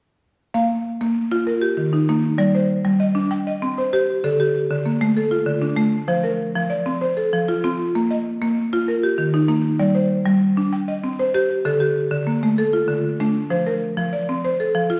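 A buzzing, woody marimba struck with hard mallets sits up front, playing hypnotic arpeggios in a straight 12/8 feel from 0.5 to 15.0 seconds, cycling twice through Bb5, Eb, G5, Cm, Dm and F in this southern African traditional piece cut from a longer performance, its percussive hardwood bars ringing into the wet reverb of a recital hall.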